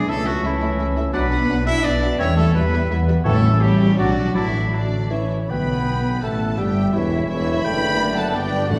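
Rich, up-front double basses, cellos, clear clarinet, oboe, bassoon, dark French horns and bright trumpet stabs open this lively, cheerful classical passage in a rubato 3/4 at 169 BPM. A lush violin melody with vibrato arrives almost at once over very quiet second violins, airy flute and violas. Dry, hard-mallet timpani strike in at 3.3 s, and a tight trombone section and tuba join at 5.5 s, the whole ensemble heard from further back on a reverberant scoring stage.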